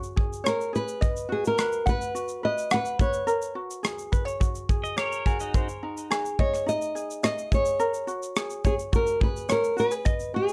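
A dark, lightly reverberant production frames this sunny, heartfelt acoustic pop excerpt, where a mellow fingerpicked ukulele and an airy, polished drum kit of punchy kick, rim click and shaker set a straight 4/4 feel, a fresh-stringed nylon-string guitar carries the up-front plucked melody from 0.5 s, and a bright, twangy pedal steel guitar slips in with a delayed volume swell between 4.8 and 5.7 s.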